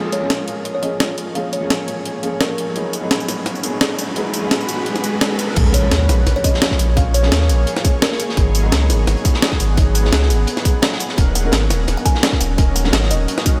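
This soulful, lush liquid drum and bass excerpt opens with a soft, felt-muted upright piano, its action noise audible through lush chorus and diffuse delay, over a shimmering, ethereal pad and a very quiet riser. A pitched-up, gritty sampler-style breakbeat kit and a woody, hollow kalimba melody follow almost at once, with filter sweeps on the pad and kalimba during the build-up. At 5.6 seconds an impact marks the drop, where a tight, up-front electronic kick, a deep, round sine sub bass and a saturated, rolled-off breakbeat kit in the background join, the pad pumping behind them in a dreamy mix soaked in huge reverb.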